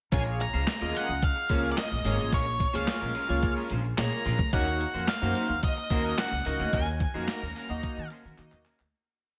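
A crisp 8-bit drum machine sets a mid-tempo boogie beat at 109 BPM in straight 4/4, with a thumpy kick, hi-hat and a snare layered with handclaps, while an upright bass plays a fat, woody, syncopated line with chromatic approach notes and a grainy egg shaker ticks sixteenths in the background. Over this late-night, danceable early-eighties boogie funk in Bb minor, moving from Bbm7 to Ebm7 at 4.5 s, a glossy chorused polysynth punches syncopated chord stabs with a filter sweep, and a twangy, slightly broken-up electric guitar chops sixteenth notes behind it. Up front, a dark octave-fuzz lead guitar states call-phrase motifs with slapback echo, all set in a lush hall reverb with a big arena sound, before the piece fades out from 6.7 s and closes on a drum fill at 8.4 s.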